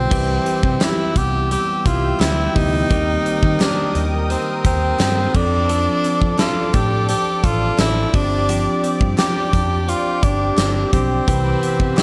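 A breathy tenor saxophone leads up front in this glossy, uplifting 1980s-style pop excerpt in C major at 86 BPM, tuned to A4 = 437 Hz. Its clear, vibrato-tinged, pop-style melody is carried on a digital delay. A huge arena drum kit also sits up front, with a punchy kick, fat snare, bright cymbals, hi-hat and tambourine under gated reverb, while a barely audible, crisp group handclap joins from 0.8 seconds. A dark, round, foam-muted fingered electric bass anchors the low end, and a bell-like tine electric piano adds clean, direct accompaniment. In the background, a brassy, nasal analog pad of detuned sawtooth holds soft-attack chords through chorus, and a picked, compressed clean electric guitar plays a riff through lush chorus. The straight 4/4 groove moves through Cmaj7, Eb6, Dm7/F and G7sus4 before returning to Cmaj7 at 11.3 seconds, set in light reverb and small room ambience.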